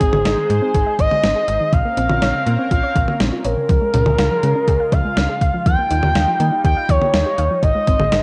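A straight 4/4 pulse at 122 BPM is driven by an up-front, overdriven 12-bit drum machine with a thumpy kick, medium-tuned snare, hi-hat and toms, while a snappy, metallic FM bass anchors this melancholic synth-pop excerpt. Over chords moving from Ab through Bbmadd9, Db and Ebadd9, a smooth sawtooth lead with vibrato and portamento carries the melody, soft round plucked arpeggios ripple through tape echo, and a shimmering pulse-width pad sustains in the background. Moderate spring reverb and a cassette home-recording character give the whole a hazy, retro sound.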